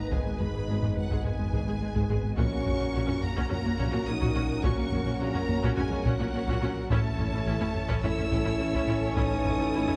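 A focused, lush violin section carries the melody over a vast, futuristic hybrid orchestral and electronic film score at 106 BPM in 4/4, joined by a woody second violin line, smooth violas, expressive cellos and distant double basses, all bowed with vibrato. Tight, dark French horns and background trombones hold sustained chords alongside a shimmering, chorused pulse-width pad, while a smooth synth bass riff and a menacing, saturated detuned saw bass with a filter swell sit underneath. Background taiko drums struck with heavy sticks drive the 10-second excerpt through G#m, F#/A# and A, all framed by a moderate scoring stage reverb.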